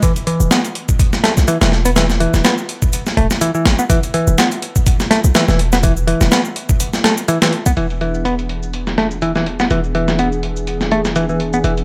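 Gritty, compressed breakbeat in a digital ambience, energetic and swaggering at 124 BPM with a 16th-note swing. Up front, a sampler-style overdriven kit with a thumpy kick and medium-tuned snare drives beside a growly picked electric bass riff through tube saturation and dub echo. A deep, boomy sine 808 bass joins at 0.4 s, and a layered electronic shaker sits in the background. When the harmony moves to E7 at 7.8 s, a filter sweep begins, and a lush, airy detuned sawtooth pad with chorus, phaser, vintage 12-bit sampler character and sidechain pumping enters at 8.0 s.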